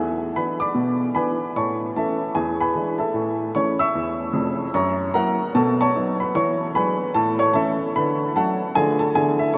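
Stride jazz in A major, swinging and exuberant at 150 BPM, this excerpt features a lone upright piano with a clear, woody, polished tone, sitting present and up front as it spans from the deep bass to the high treble. The playing moves through a lively chain of dominant chords, resolving home before touching on a major seventh and a brief minor colour near the end. A huge, wet reverb with a 9.2-second tail places the instrument in a vast, echoing space, giving the clear attack a long ambient halo.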